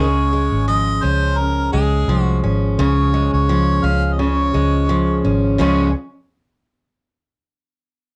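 This easy-going, heartfelt acoustic pop excerpt opens at 0.0 seconds with harmonica, steel-string acoustic guitar and electric bass all sounding together on a Db major chord. The tempo is a relaxed 85 BPM in 4/4, with a gentle swing on the sixteenth notes. A clear harmonica carries the melody in a pop style, with light vibrato, scooped notes and a smooth top, and its tone has the soft grain of cassette tape. Up front, the picked steel-string guitar supplies a warm, auditorium-sized accompaniment, also colored by tape. Underneath, a vintage foam-muted fingered bass gives a dark, round, punchy, amped low end. The whole homemade cassette recording sits in a moderate studio reverb, and the three parts play through to 5.9 seconds.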